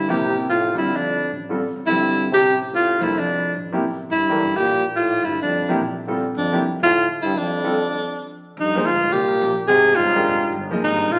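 A close-miked alto saxophone with a soft, warm tone and light vibrato carries the melody up front in this searching, intense modal jazz excerpt, swinging at 215 BPM over Dm11 and Gm7. A warm trombone with vibrato sings a low second line beneath it, while a clear grand piano, intimate and short in sustain with its action noise audible, accompanies, and a woody, dark pizzicato upright bass sits in the background. After a break from 7.5 to 8.6 seconds, the harmony moves to Fm11 for a new section, all bathed in a large studio reverb and the crackle of a very old 78 rpm record.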